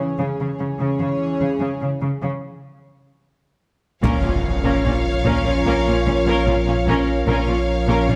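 A shimmering, chorused pulse-width pad holds sustained chords over a rich, smooth cello section carrying the bass line, opening this tense, vast stretch of hybrid orchestral and electronic film score in Bb minor at 74 BPM in a straight 4/4. The opening harmony rests on Dbm, and a break from 2.4 to 4.0 seconds leaves the pad and cellos hanging before the music settles onto Bbm. At 4.0 seconds the full ensemble arrives: a focused, lush violin section takes a second line up high, a clear, distant viola section fills in the accompaniment, and a mellow, roomy French horn section adds sustained chords. Underneath, a very quiet double bass section and a deep, round sine sub bass anchor the low end on Bb1. A compressed, saturated taiko ensemble with heavy sticks strikes briefly until 5.6 seconds while an electronic impact sounds in the background. A moderate scoring stage reverb lends the whole cut-down passage a sense of space.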